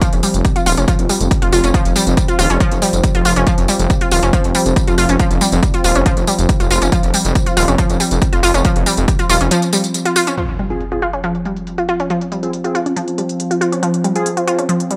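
A straight 4/4 pulse at 139 BPM drives this hypnotic peak-time techno, where an overdriven, up-front kick and filtered, pumping hi-hat and tambourine anchor a thick, menacing detuned saw bass and a lush, punchy unison pluck riff with tape echo over a mellow, chorused analog drone, until the kick stops at 9.2 s, an electronic impact lands at 10.4 s and edgy sync-sweep polysynth stabs with a nasal filter sweep and analog delay enter at 10.7 s, all in a dry, gritty hardware recording with digital ambience.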